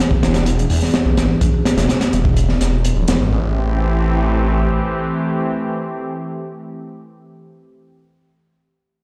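A crunchy breakbeat kit with a punchy kick and high-tuned snare drives this raw, gritty breaks excerpt until 3.2 seconds, joined by a swirling, phased detuned saw bass carrying a filter sweep, faint distant congas and a barely audible shaker, while a lush, chorused unison pad with vintage 12-bit sampler texture and sidechain pumping sustains E7 and then Am7 chords through 7.8 seconds in a big, reverberant room.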